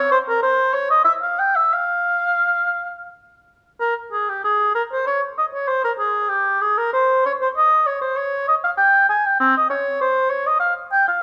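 In a rubato 3/4 at 84-100 BPM, this grave, solemn baroque-style fantasia in F minor, cut from a longer piece, gives a warm solo oboe with light vibrato the whole 11.2 seconds, ranging from C4 to Ab5 and placed up front yet roomy within a moderate recital-hall reverb, as its opening idea gives way to a new passage at 3.8 seconds.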